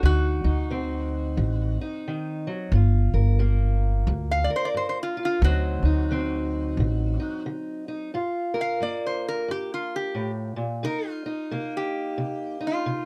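Opening at once on a metallic, nasal lap resonator guitar taking a steel-bar slide solo over a boxy, fingerpicked parlour steel-string guitar and a woody, pizzicato upright bass that drops out at 7.2 s, this smoky, soulful acoustic country blues excerpt in G minor swings at 89 BPM through D7b9, Gm7 and Cm7 changes, captured as a dry, close, 1970s-style studio recording with every part up front.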